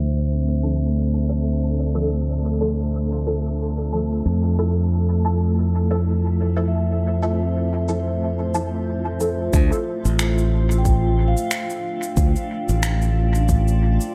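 A hazy, deep wash of light reverb and digital ambience opens this short ambient dub cut, taken from a longer piece and moving at 91 BPM in 4/4 with a 58% swing on the sixteenths in D minor. A bright, growly fingered electric bass sits punchy and up front from the start, while a vibraphone played with soft mallets spins metallic, ringing arpeggios through a low-pass filter and dub echo, its fast motor vibrato giving it a gentle shimmer. Muted sawtooth chord stabs with a plucky filter, phaser, ensemble chorus and dub echo punctuate the opening until 9.4 seconds, joined by a cloudy, granular pad of detuned sustained chords and a dark, breathy wind-like noise texture drifting in the background. Overdriven electronic shaker and finger snaps, low-pass filtered and sent into dub echo, carry the groove, and filter sweeps move across the drums, pad and vibraphone as the harmony shifts from Dm to Fmaj7 and back. 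At 9.5 seconds a deep, tape-warm layered electronic kick drum enters beneath the bass, pad and vibraphone, grounding the closing stretch.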